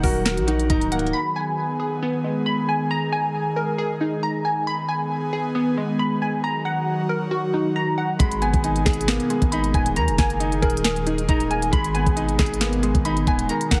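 The half-time groove of this dark, eerie trap cut drops out almost as soon as the clip opens and only returns at 8.2 seconds, where the up-front electronic kit brings a knocking kick, sharp snare and crisp hats alongside a deep, long 808-style sine bass with a fast attack and decaying tail. Throughout the passage a glassy, crystalline wavetable pluck carries the arpeggios near the front, its detuned digital tone shaded by chorus, a low-pass filter, tape echo and a moving notch. Beneath it, an airy, breathy pad holds soft, slow-attack chords with a long release and chorus. A clear, intimate grand piano with audible action noise and long sustain adds filtered accompaniment at the start and again from 8.2 seconds. The chords circle between minor and suspended shapes, and the whole sits in light digital ambience with a heavily compressed, radio-like sound.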